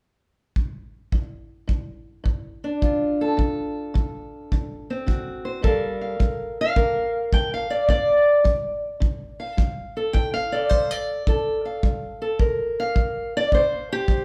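A dark, boxy fingerpicked parlour steel-string acoustic guitar carries the melody from 1.1 seconds, ranging from G2 to G5 over G5, D7 and Gm9 chords, while a punchy, airy kick drum played with brushes enters at 0.6 seconds, both up front in this smoky, soulful acoustic country blues in G minor at 107 BPM with a swung 4/4 feel, recorded live in one room with moderate large studio reverb.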